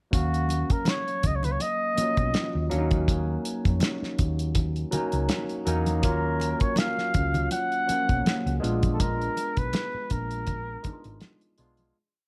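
A lightly swung sixteenth-note groove in 4/4 carries this lush, cinematic and silky 1970s-style soul piece, with a cloth-damped, thuddy drum kit up front playing a smooth mid-tempo pattern with a fat snare and tight kick, a round, dark hollow-body bass weaving a melodic line with muted ghost notes and chromatic approach notes, a barky, lightly overdriven tine electric piano pushing rootless chords through a phaser, very quiet damped congas slapping on two with open tones on four, and a clear, punchy flugelhorn with vibrato stating call-like motifs in studio reverb, carrying on into the fade-out that begins at 9.0 seconds.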